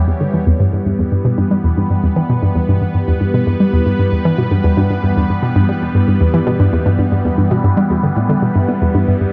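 Ambient, sequencer-driven space music with a mysterious, cosmic mood, this short passage cut from a longer piece moves at 115 BPM in a straight 4/4 and rests on a single E minor chord throughout. A hollow square pluck carries the riff in the low register, its bouncy, wave-folded tone given a fast attack and short decay, with a detuned edge and a noise layer under the square and sine waves. Chorus, a cassette-tape grain and tape echo color this part, and a filter sweep runs across the arpeggiated synth sound for the full 9.3 seconds. Above it, a phased analog pad holds sustained sawtooth chords, swirling through phaser and chorus with a slow attack and long release. Both parts sit up front in an echo-heavy mix, bathed in a moderate plate reverb with a 3.0-second tail.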